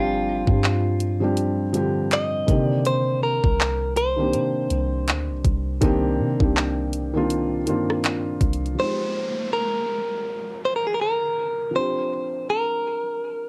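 A clean, twangy electric guitar carries the melody from the first moment, its picked, compressed, scooped tone recorded direct and touched by tape echo. Beneath it, a felt-muted upright piano plays mellow, intimate accompaniment, its thick felt and audible action noise colored by cassette tape. A round, sine-like 808-style bass sits low, with a fast attack and a dark, decaying tail. At 0.5 seconds a produced trap drum kit arrives up front, with a knocking kick, glinting hats, handclaps and rim clicks, also carrying that cassette character. The swung contemporary R&B groove has a late-night, longing mood, moving from G7sus4 to Cm9, all set in light reverb with the feel of a home cassette recording. At 8.8 seconds the drums and bass stop, leaving guitar and piano over Fm9 and then G7sus4 as a faint electronic downlifter enters, closing this fragment of a longer piece.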